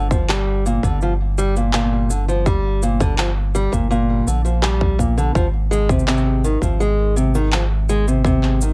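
A light reverb gives this short folktronica clip an intimate, autumnal glow, with the electronic drums carrying the sound of a large room. At 83 BPM in a straight 4/4, tuned to A4 = 438 Hz, a fingerpicked acoustic archtop guitar sits up front, playing boxy arpeggios with audible finger squeak, softened by a low-pass filter and trailed by delay. Beneath it, a deep, warm, round sine sub bass with a fast attack and long sustain anchors the low end. A tight electronic kick drum and electronic cabasa and handclaps enter at 0.1 seconds, giving the track a produced pulse. The harmony moves from Gm7 to a rootless Fm7/Ab at 5.4 seconds.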